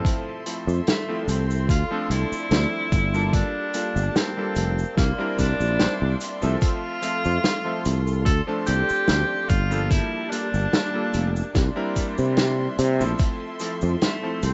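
A bright, distant tenor saxophone carries the melody with tape echo from 0.9 s in this woozy, nostalgic vaporwave excerpt at 73 BPM, over an electric grand piano with lush chorus and a clangy low end, veiled con sordino strings, a growly fretless bass, an overdriven thumpy electronic kick and a small-room vintage kit of snare, hi-hat and cabasa, both drum parts roughened by 12-bit sampler grit, all cycling through Fmaj7, Dm7, Gm9 and C9 in a rough, reverberant home-demo mix with a dulled top end.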